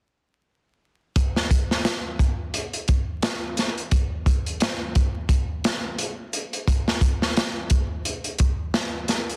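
This dense, heavily limited recording carries vinyl crackle and light reverb around a cinematic, melancholic trip hop groove with a swung sixteenth-note feel. A crunchy acoustic breakbeat drum kit, gritty and saturated with a rolled-off top, sits up front from 1.2 to 9.4 seconds, its hi-hat, tight kick and medium-tuned snare captured with a mid-forward studio-room character. The short cut from a longer piece sits entirely on this one section of drums.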